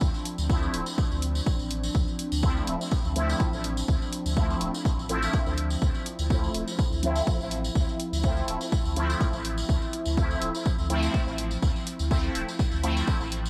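Meditative and hypnotic, this dub techno passage, cut from a longer piece, settles on a single Dm7 chord with a lightly swung sixteenth-note feel. A punchy, tape-toned electronic kick sits up front, joined by an analog hi-hat from 0.3 s, both carrying the air of a large room, while a jingly, band-limited vintage tambourine adds acoustic sparkle. Beneath them, a deep, round sine sub bass holds the low end and pumps with the sidechain. A warbling, nostalgic lo-fi pad sustains mellow chords with chorus and its own reverb, breathing to the same pumping. From 0.5 s, a juicy, detuned sawtooth polysynth fires resonant stabs through a filter sweep, soaked in chorus, phaser, sidechain pumping and dub echo. The mix has a bright 1980s-style digital sheen, light reverb and a bed of vinyl crackle.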